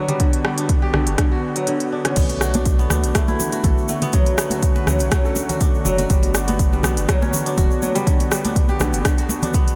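A lightly swung 4/4 groove at 122 BPM drives this warm, spiritual afro house excerpt, built on an up-front, deep electronic kick that drops out briefly at 1.7 s and a tape-warm afro-pop kit of crisp hats, rim clicks, toms and crash; above it, ringing fingerpicked kora arpeggios trail a diffuse ambient delay, and a smooth, detuned vintage pad with subtle chorus holds Gmaj7 and Bm7 chords, both carrying sidechain pumping, while a round, dark analog bass with the same pumping sits underneath and high-tuned, hard-hand congas and a grainy egg shaker join in the background at 2.2 s, the whole set in a light reverb.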